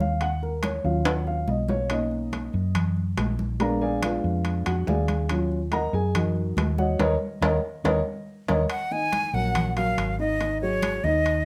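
A driving, straight 4/4 Afro-Cuban jazz groove, set by soft-handed congas in the background and ringing metal-shell timbales, with short drum fills along the way, underpins a woody, boxy upright piano soloing over a round, amped hollow-body bass, until a band accent leads to a breathy, bright flute with vibrato entering up front at 8.7 seconds, all in a sophisticated club-reverb fragment cut from a longer piece.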